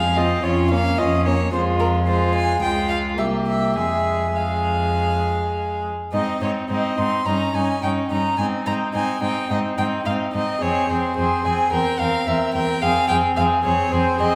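Stormy and urgent, this fragment of a longer work is a quick classical-period movement for string quartet at 108 BPM in 4/4, played with a rubato feel in F minor before turning to Ab major at 6.1 s. The first violin carries the melody up front and close, with an airy, nasal bow. The second violin takes a darker second line beneath it, softened by light vibrato and a smooth top. The viola supplies a rich accompaniment from a more distant position, while the cello, close and up front, anchors the bass with a rich tone. All four players use gut strings in period style, giving the ensemble a reedy edge. The quartet sounds throughout the full 14.3 seconds in a wet recital-hall acoustic, as if heard in a church or concert hall, with harmonies moving from F minor and C7 into Ab and Eb7 before returning to F minor.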